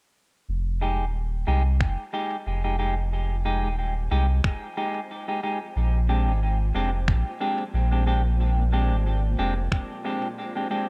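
Ambient dub at 91 BPM in F dorian, spacious and meditative, this short cut from a longer piece opens at 0.5 seconds with a deep, round sine sub bass carrying tube saturation up front, soon joined by dark, clean stabs from a fingered semi-hollow electric guitar trailing dub echo. At 1.8 seconds a muffled, pitched-down, thumpy electronic kick drum and compressed electronic finger snaps with their own dub echo arrive, swinging lightly on sixteenths, while from 2.1 seconds a cloudy, detuned granular pad with built-in reverb drifts in the background. The harmony moves from Fm7 to Bb13 at 5.8 seconds, all within a dark production and light reverb.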